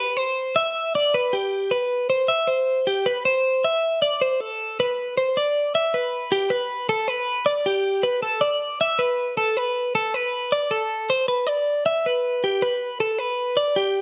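Bright and wistful, this 14-second rock excerpt in straight 4/4 at 157 BPM features a lone clean, picked twelve-string electric guitar, compressed and up front with spring reverb, ringing between G4 and E5 in a lightly reverberant space as it moves from an opening passage into a new section at 5.4 seconds.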